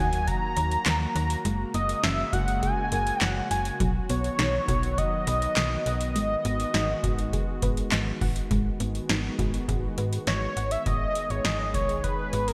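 A bright, 1980s-style digital sheen and a lush hall reverb frame this nocturnal, melancholic synth-pop excerpt, cut from a longer piece and moving at a moderate, straight pace. Up front, a thick, nasal unison lead carries the melody with vibrato and a trailing delay, while a slap-like FM bass with a snappy, metallic attack anchors the low end. An electro analog drum machine with a deep kick, punchy snare, metallic hi-hats and handclaps sits forward in the mix, its gated reverb and tape-warm character giving it weight. Beneath these, a smooth, warbling analog pad holds sustained chords through chorus, and a soft, round pluck plays dark arpeggios with chorus and delay in the background until it drops out at 10.8 seconds. The harmony moves from D#m through F#add9, B and G#m7 before settling on G#m at 10.9 seconds.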